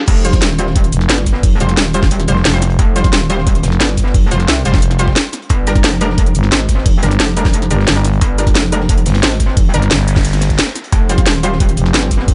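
A metallic, chorused wobble bass with overdriven grit anchors this tense, futuristic stretch of dark technical drum and bass at 177 BPM in F dorian. It is joined by a thick, growling FM bass and driven by a knocking electronic kick. Up front sits a layered drum and bass kit with a cracking snare and crisp hats, while a very quiet, gritty breakbeat kit with a rolled-off top sits beneath it. Bold, punchy orchestra-hit-like stabs ring out through tape echo over chords moving between Fsus2 and Gm. A faint swarming, detuned drone and a soft swell open the passage, and a noise sweep at 10.0 seconds leads into a brief break at 10.6 seconds, all in a dry, close mix.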